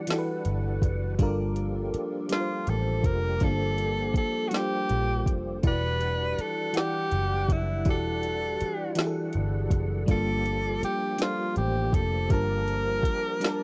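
The rhythm moves in a slow, straight six-eight at 54 dotted-quarter beats per minute, carried by a smooth R&B drum kit that enters at 0.1 seconds with a soft kick, woody snare and metallic hi-hats, sitting up front in an electronic, produced sound. This sultry, late-night R&B fragment, cut from a longer piece, drifts between Em9 and Gm9 chords. A breathy tenor saxophone leads the melody between E4 and B4 in a clear, jazz-style solo with vibrato and scooped notes, touched by slapback echo. An FM electric piano with a soft pad layer supplies lush, dreamy accompaniment with detuned chorus shimmer, while a vintage muted picked electric bass, dark, round and foam-muted, joins at 0.5 seconds in the low register. Far behind, a percussive tonewheel organ holds sustained chords with key click, light overdrive, chorus vibrato and a slow rotary speaker, all within a dry, close 1970s-style studio sound framed by digital ambience.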